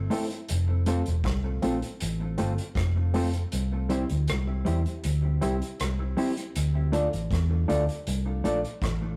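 Roots reggae in D minor at 79 BPM, this short, hypnotic and meditative passage is cut from a longer piece and moves through F, C and D minor. A vintage muted fingered electric bass sits up front, dark, round and punchy with a foam-muted, amped tone in the low register. A mellow electric guitar supplies clean, compressed accompaniment carried by tape echo, while an overdriven reed electric piano adds reedy, barky stabs that turn gritty through a combo amp. The vintage acoustic drum kit plays hi-hat, kick and rim click with a punchy kick, a pumping small-room feel and a rolled-off top, and the kick drops out from 3.5 to 6.6 seconds. The whole track has the rough character of a rehearsal-room recording, with warm saturation and a moderate stone-room reverb.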